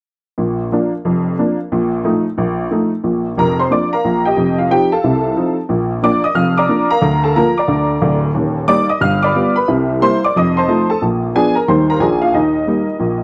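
A jangly, detuned honky-tonk upright piano plays solo stride jazz across a broad span, from deep bass to bright treble, swinging playfully over a brisk 4/4 through a turn into new harmony at 8.4 s, with light reverb in a dry, close 1970s-style studio sound in this short cut from a longer piece.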